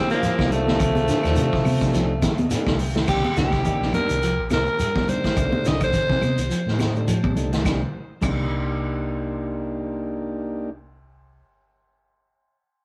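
Afrobeat excerpt with a defiant, hypnotic mood, led by a raspy, gritty alto saxophone with tape echo and a breathy, whispered tenor saxophone line that drops out at 2.5 seconds, over mellow combo organ with its own fills, a very quiet clean semi-hollow guitar picking arpeggios, a punchy vintage drum kit with dark cymbals and a brief fill, bright high-tuned congas, grainy shekere and woody claves in the background, and a round, dark hollow-body bass that carries on alongside the organ after the drums stop at 8.4 seconds, all in a rough rehearsal-room sound with saturation.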